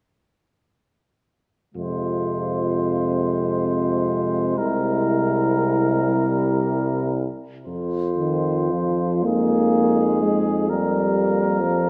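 A distant, roomy euphonium opens this solemn, yearning excerpt of a hymn-like classical brass band piece in F minor at 1.7 s. At 1.8 s a flugelhorn with light vibrato and a vintage tone takes the melody, joined by a French horn section in the background, a second euphonium with vibrato, and a clear, punchy tuba placed up front on the bass line. In a slow, rubato 6/8 of about 35-45 dotted-quarter beats per minute, the harmony moves from Fm to C7 and then, from 7.7 s, settles over an F pedal in a moderate concert hall reverb.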